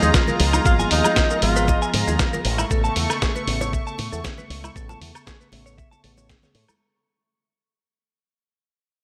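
A breathy, whispered tenor saxophone leads this groovy, sleek nu-disco excerpt at 117 BPM with a brief melody in diffuse ambient delay, stopping at 1.8 s. Beneath it sit a mellow tine electric piano, a lush, warbling detuned pad that pumps against the sidechain, a twangy clean guitar riff with subtle chorus and delay, and a punchy fingered bass through an envelope filter, all moving from G#m69 to Aadd9 at 2.5 s. A gritty sampler-style kit with a fat snare, hi-hat, shaker and woodblock rides a lightly swung 16th-note feel alongside soft, very quiet congas, with an up-front thumpy electronic kick entering at 0.1 s, the whole drop fading out in a dreamy mix drenched in plate reverb.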